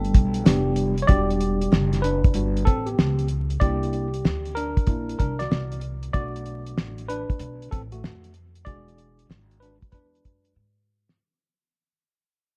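A dark, smoky production sits in a small room, with vinyl crackle under this mellow jazz-hop fragment cut from a longer hip hop piece. A soft-mallet vibraphone, close-miked, metallic and very quiet, rings a single note with slow motor vibrato before stopping at 0.7 seconds. From 1.1 seconds, a worn, slightly out-of-tune tine electric piano, heard through its built-in speakers, takes a clean solo over Em7, C9, Bm7 and E7 while the recording fades out. Up front, a woody, thumpy pizzicato upright bass on gut strings carries the bass line, and a cloth-damped, thuddy drum kit with a fat snare, a tight kick and a rolled-off top keeps a swung groove. The dry, smooth drums close with a brief fill at 10.6 seconds.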